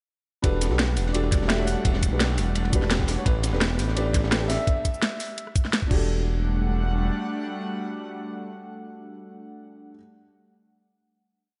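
Rolling two-step drums drive this short, lush and soulful liquid drum and bass piece: a thumpy electronic kick and an overdriven, up-front kit of cracking snare, bright hats, rim, cabasa and crash ride over a dark, saturated breakbeat loop set in the background, while a smooth sawtooth synth bass plays a dotted rhythm, an airy, breathy pad sustains chords under sidechain pumping, a mellow felt-muted upright piano adds syncopated close-voiced stabs with tape echo, and a boxy grand piano states short call-phrase motifs through chorus and tape echo until 5.7 seconds, before the piece closes on a final hit at 6.1 seconds.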